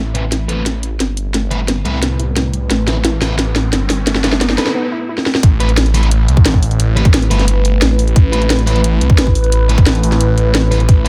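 A straight 4/4 pulse at 176 BPM drives this tense, mechanical excerpt of dark technical drum and bass in A minor, cut from a longer piece and opening on an Amadd9 chord. From the start a deep, moody pad sits in the background with detuned sawtooth layers, chorus and reverb, while a soft, round pluck plays arpeggios that carry a filter sweep and tape echo until 5.2 seconds. Beneath them a thick, swirling detuned saw bass runs through a phaser, saturated and up front, and a sludgy, double-tracked distorted guitar adds picked stabs through overdrive, a low-pass filter and tape echo. The drum kit builds with fills and a cracking snare over hi-hats as a riser climbs in the background from 2.2 to 4.8 seconds, followed by a short break. At 5.4 seconds the drop lands with a tight, overdriven electronic kick pushed up front, all set in a digital ambience.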